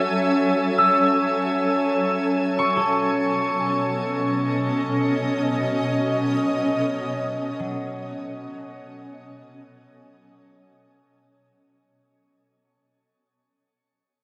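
Melancholic and serene, this free-time ambient excerpt sets an up-front, shimmering pad of sustained chords with chorus and an octave-up glow against the pure, glassy texture of a glass harmonica, while a ringing, fingerpicked concert harp enters at 0.8 seconds with arpeggios trailed by diffuse delay, all bathed in a long shimmer reverb as F#m7 gives way to B13 through a fade-out across the whole excerpt.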